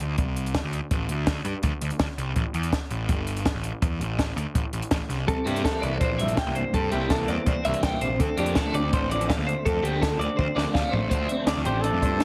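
A straight 4/4 pulse at 165 BPM drives this restless, wistful piece of math rock and midwest emo in D minor, cut from a longer work. A compact cocktail drum kit sits up front with a dark, smooth small-room sound, a high-tuned snare and a punchy kick, joined by a fuzzy, overdriven picked electric bass, also up front. At 5.3 seconds two twangy, compressed twelve-string electric guitars arrive: one carries the chords through a harmonic tremolo, while the other plays bright, clean arpeggios up high, colored by warbly pitch drift and analog delay. A crunchy, double-tracked overdriven guitar riff with phaser sits in the background. The harmony moves through a D7 voicing that omits the third, A5, C7 and Bbmaj9, and a drum fill at 10.4 seconds leads into a new section on Dm7, where a warm, vintage trumpet with vibrato enters at 11.6 seconds for a short melody. Light reverb and a heavily compressed, radio-like sound shape the whole mix.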